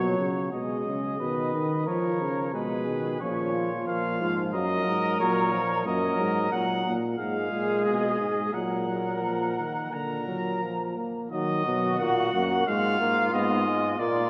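In a straight, steady four-four, this solemn classical canzona excerpt for brass ensemble sets a distant trumpet with light vibrato on the melody, a warm flugelhorn second line entering at 0.5 s, a clear trombone accompaniment and a mellow, soft-edged euphonium bass, all bathed in a spacious church reverb.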